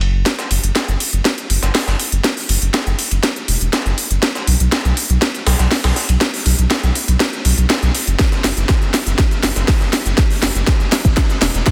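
This progressive house excerpt sits in a lush hall reverb under a dense, heavily limited modern master, giving its dreamy, expansive mood plenty of air at 121 BPM in a straight 4/4. A deep, thick sine sub bass with tube saturation and sidechain pumping holds the low end from the start, sitting up front between E1 and B1. Two drum kits carry the rhythm: a crisp, cracking house kit of hi-hat, shaker and soft-clipped snare enters at 0.3 seconds up front, while a gritty, compressed breakbeat sampler-style kit of hi-hat, ride cymbal and high-tuned snare sits in the background with a small-room character and filtered cymbals, hats and snare. The whole passage is a build-up with a drum fill running throughout. At 8.2 seconds a punchy, layered electronic kick drum lands up front, driving the final stretch forward.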